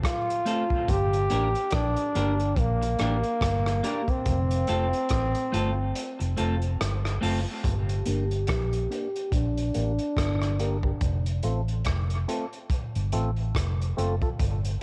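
This home cassette recording has a light studio reverb, giving this dub reggae cut from a longer piece a spacious, hypnotic mood over a swung 4/4 feel. A clear, vintage trombone carries the melody up front, dipped in tape grit, a low-pass filter and dub echo, until it stops at 11.0 seconds. Beneath it, a crunchy breakbeat kit of tight kick, hi-hat and rim click sounds saturated and gritty with a rolled-off top. A dark, round, foam-muted fingered bass joins at 0.9 seconds, punchy and forward. A clean, picked semi-hollow guitar adds filtered, echoing accompaniment through the opening break. A filter sweep marks the second half, where a nasal, percussive organ stab with chorus, filtering and dub echo enters at 8.1 seconds over chords moving between G minor and F.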